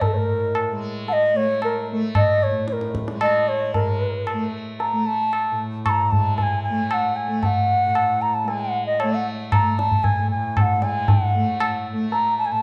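In a straight 7/4 at 114 BPM that speeds up, this devotional, radiant Hindustani classical passage in raga Marwa on A, tuned to A4 = 438 Hz, is led by an airy bamboo bansuri melody with vibrato, tongued notes and rolled-off highs, placed up front. Beneath it a softly plucked tanpura drone buzzes and shimmers, while a low-tuned tabla with a short ring, compressed and saturated, also sits up front. The performance is bathed in the reverb of a recital hall with a 1.6-second decay, like a church or concert hall.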